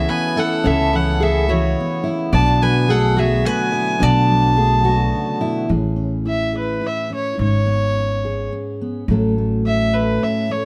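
A pastoral, hopeful acoustic folk piece in 3/4 at 107 BPM in A major opens with a bowed fiddle carrying a nasal, reedy melody up front with plate reverb. Beneath it play a fingerpicked dreadnought guitar, a woody double-string mandolin second line, breathing harmonium chords, dark picked guitar arpeggios with finger squeak, and a pizzicato upright bass. The mandolin drops out at 5.4 s and the harmonium and arpeggio guitar at 5.7 s, leaving the fiddle to solo over the full-bodied fingerpicked guitar and bass. The bass stops at 10.2 s, and the fiddle and guitar finish at 10.7 s, as the chords move through Amaj7, C#5/G# and F#m/A in this cut from a longer piece.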